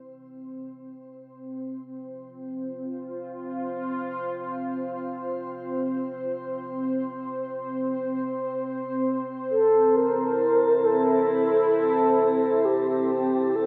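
Unsettling and cavernous, this dark ambient drone drifts in free time, opening with a fade-in on a sweeping, resonant, detuned pad that holds sustained chords over C, F5 and Am, bathed in chorus and shimmer reverb. At 9.5 seconds a mellow, horn-like synth lead with a round tone and vibrato enters up front, carrying a short sustained melody through chorus, shimmer reverb and dub echo. A wet spring reverb and an echo-heavy mix deepen the sense of vast, hollow space in this fragment from a longer piece.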